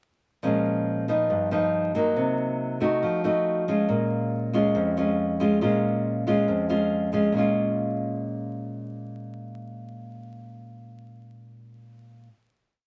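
A fingerpicked nylon-string guitar carries this short, smooth and melancholic bossa nova piece on its own, its warm classical tone sitting up front as thumb bass notes move under syncopated plucked chords. A brief minor progression unfolds before the guitar settles on a final chord held from 7.3 to 10.8 seconds. Moderate studio reverb and a layer of vinyl crackle frame the playing.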